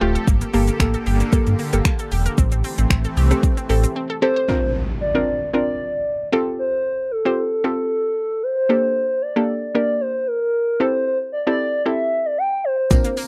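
A hollow, woody clarinet-like synth lead carries the melody in this upbeat, euphoric dance-pop excerpt. It enters at 4.2 seconds, up front, with chorus, vibrato and slapback echo. Beneath it, a soft, round pluck with a mellow, gentle character plays the accompaniment throughout. The opening is driven by a full sine sub bass with an octave layer and a layered deep house kit of kick, hi-hat, finger snaps and shaker. Alongside them are a lush, detuned sawtooth pad with chorus and phaser and a punchy, bright unison pluck playing arpeggios with slapback echo, and all three of those synth parts carry sidechain pumping. An electronic impact marks the move into the second section at 4.5 seconds. From 12.9 seconds the drums, bass and arpeggios briefly return, joined by a jingly acoustic tambourine in the background, and the pad follows at 13.2 seconds, all in a dry, close mix that recalls a 1970s studio with little reverb.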